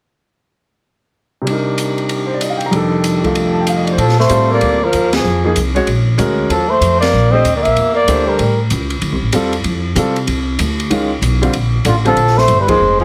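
Small-group swing and bop jazz at a brisk 191 BPM in Bb major, sophisticated and playful, where a clear, up-front baby grand piano and an open kit with dark cymbals, a high-tuned snare and boomy kick set the swing before a woody, growly pizzicato upright bass arrives at 4.0 s alongside a dark, whispered, distant trumpet carrying the melody over a mellow subtoned tenor saxophone second line, both breathy with scooped notes, the horns dropping out at 8.6 s and returning at 11.9 s, with band accents punctuating a moderately reverberant, heavily compressed radio-style sound in this fragment cut from a longer piece.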